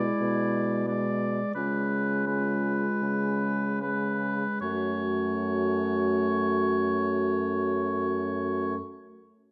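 A solemn, melancholic fragment of a slow romantic wind-quintet movement opens with four winds together: a smooth, up-front oboe carries a second line over a close-miked French horn, a distant, roomy clarinet and a warm bassoon bass with light vibrato, while the rubato pace slows through the first 4.6 seconds and the harmony moves from G#dim/B to C#7 before settling on F#m, all set in a reverberant recital-hall ambience.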